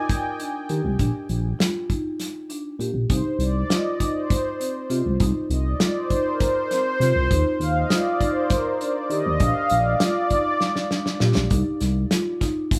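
Captured as a band playing live in one moderately ambient room, this brooding, driving progressive instrumental excerpt in C minor moves in 7/8 at 200 BPM, with a bright, detuned sawtooth pad carrying a filter swell and chorus up front and an analog synth pad solo running throughout. A dark, gliding synth bass with portamento and a punchy acoustic indie kit sit up front beneath woody rosewood marimba arpeggios. The resonant pad drops out at 10.6 s as the drums play a fill until 11.5 s, while the chords cycle through Ebmaj7, Bb and Cm.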